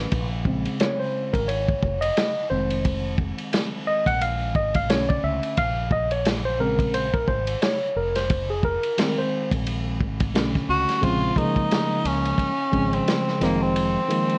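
Worn, warbling cassette tape with a warbly pitch drift and a moderate studio reverb gives this cool, smoky jazz-hop excerpt in Bb minor its hazy character, set at a swung 88 BPM in 4/4. A slightly out-of-tune tine electric piano, bathed in plate reverb, takes the featured role up front through the first 11.0 seconds, supported by a round, dark fretless bass and a muffled vintage drum kit with dark cymbals, a tight kick and 12-bit sampler grit. At 10.7 seconds, a breathy, whispered tenor saxophone enters with vibrato and scooped notes, carrying the melody through tape echo and plate reverb over the Bbm7 to Fm7 changes.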